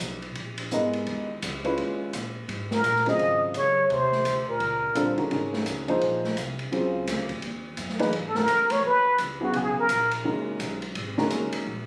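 Captured on a phone in a club-like room with moderate reverb, this cool, intense modal jazz excerpt has a roomy, slightly distant quality. A swinging upright bass, woody and thumpy, and an acoustic drum kit with dark cymbals, a medium-tuned snare and a boomy kick set the pulse from the start. A polished upright piano enters at 0.7 s and stays up front, laying down rich suspended chords. At 2.7 s a plunger-muted trumpet takes the lead with a wah-wah tone, scooped notes and light vibrato, carried on plate reverb. A mellow bass clarinet plays a second line in the background beside it. After the harmony settles onto a minor chord, the trumpet returns at 8.3 s, its smooth, soft-edged phrases floating above the rhythm section.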